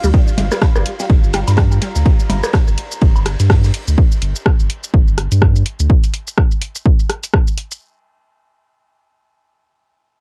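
The groove sits in a swung 4/4 pulse, driven by an up-front, punchy electronic kick that runs from 0.1 s nearly to the end. This short minimal techno excerpt feels quirky and clinical, and it stays on a single Gm7 chord throughout its drop. Around the kick, a tape-warm analog drum machine ticks out hi-hat, rim click and shaker, while layered electronic blips, rim click and woodblock, re-recorded in a small room with tape echo, pop in between 0.4 and 3.2 s. Far back, an oversized low-tuned acoustic kit adds a fat, gritty snare, hi-hat and ride in a bright, pumping stone room. A deep, thick saturated sub bass holds the low end with sidechain pumping, and a juicy, squelchy resonant blip pluck states a brief riff with phaser, chorus and tape echo in the opening 1.9 s. Underneath, a moody, dark ambient pad and a very quiet, bubbling stepped-filter texture drift in the background, all captured as a dry home recording on cassette.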